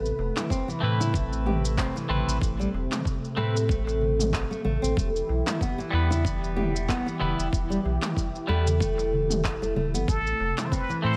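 Light reverb and digital ambience frame this earthy, meditative organic downtempo excerpt in A minor at 94 BPM with a gentle 16th-note swing, where a smooth, detuned sawtooth pad with chorus and a round sine sub bass both pump under sidechain alongside a gritty, overdriven sampler-style kick, an electronic kit of handclaps, shaker and toms re-recorded in a small room, a crisp metal-shell darbuka in the background, fingerpicked nylon-string guitar arpeggios with finger squeak and tape echo, and a bright, twangy clean electric guitar that also pumps through tape echo, moving from Amadd9 to Em until a brilliant, plunger-muted trumpet with wah-wah and vibrato enters up front with the melody at 10.1 seconds.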